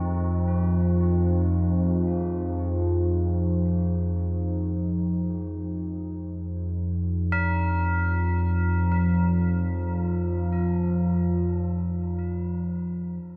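An up-front, evolving sawtooth and pulse-wave analog drone anchors this ominous, unsettling dark ambient fragment in free time and F minor, as a deep, detuned, wave-folded analog pad fades out over its sustained Fm chord and mellow, metallic tubular bells ring out delayed arpeggios, all bathed in a huge ambient reverb for about 13 seconds cut from a longer piece.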